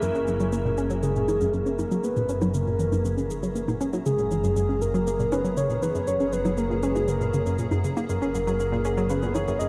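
Awash in an enormous, lingering reverb and the worn, warbling pitch drift of old cassette tape, this cosmic, luminous stretch of sequencer-driven space music is a short cut from a longer piece, moving in a straight 4/4 over an F#7 chord. Up front, a soft octave-layered synth lead carries the melody with a full, round, dark tone, sustained notes with vibrato, and chorus, shimmer reverb and delay. An analog pluck plays a bright, fast-attack riff with a filter sweep and ring-modulated edge, while a fat, detuned analog bass sounds decaying notes on a low F#1 with tube saturation. Far in the background, an evolving wavetable pad fades in with slow-blooming, morphing chords through phaser and shimmer reverb, joined by a pulsing, tempo-synced gated texture on a single G#4. Dry, tape-toned cabasa and bongos with delay keep the pulse, and a very quiet, ringing Celtic harp plays thumb-plucked arpeggios only until 2.4 seconds.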